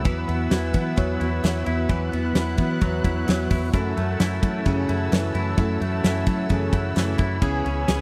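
This short cut from a longer jangly indie pop song opens with the full band at once, carrying a nostalgic, youthful mood over a straight 4/4 pulse. A big rock drum kit sits up front, with a fat snare, a tight kick, hi-hat and ride cymbal ringing in a bright stone room, while a vintage muted fingered electric bass adds a dark, round, foam-muted low end. A direct-recorded clean electric guitar plays twangy, scooped arpeggios coated in lush chorus, and a full-bodied picked dreadnought acoustic guitar adds picked accompaniment in the background. A reedy combo organ with heavy vibrato fills out the accompaniment, and a soft-attack bowed string section holds sul tasto chords with a smooth top, tucked close and intimate behind the band. The harmony moves from Esus2 to F#m7 at 3.7 seconds, and a brief transistor organ fill at 6.5 seconds leads into C#m7, all captured in a dry, close 1970s-style studio sound.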